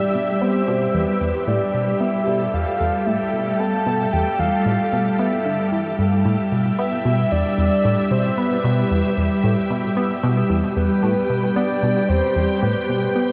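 A lush, vintage string machine opens this hypnotic, mysterious piece of ambient space music with sustained chords on E minor, its ensemble chorus holding it up front. At the same moment, a soft, round lead built from triangle and sine layers with a sub octave carries the melody with vibrato, chorus and delay. From 0.1 seconds a tight, nasal sequenced synth of detuned sawtooth and pulse waves drives a filter-plucked low riff at 113 BPM in straight 4/4, while a long 7.8-second shimmer reverb bathes the dark E phrygian production in this cut from a longer piece.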